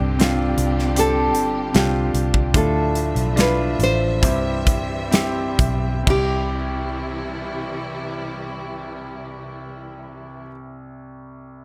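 In a straight 4/4 that slows over the opening 6.1 seconds within a 62-80 BPM range, this heartfelt, emotional pop ballad in C major, cut from a longer piece, moves through Csus2, Dmadd9 and C as a bright, full-bodied fingerpicked nylon-string guitar carries the melody over clear, long-sustaining concert grand piano with deep bass, a round, punchy foam-muted fingered electric bass, a distant, lush bowed string section with vibrato and portamento, and a tight, up-front acoustic drum kit with crash, hi-hat, kick and snare that drops out at 6.3 seconds. The guitar, bass and strings carry on until 10.5 seconds, after which the piano rings on alone until 11.6 seconds in a dry, close sound.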